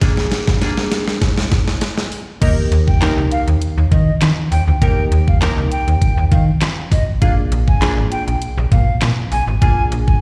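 A snappy, metallic FM bass with sidechain pumping drops in at 2.4 seconds alongside a silver concert flute melody, pure and vibrato-touched with slapback echo and delay, lifting this euphoric, upbeat dance-pop excerpt in Eb major at 100 BPM. Before that, a knocking, layered electronic drum kit with deep snare, handclaps, hi-hat and crash plays a build-up fill under a crystalline wavetable pluck, which carries chorus and slapback echo throughout, along with a filter-swept timbre. The chords move from Bb7 to Eb and back to Bb7 at 7.2 seconds, and the whole thing sounds as if heard through a live venue's PA.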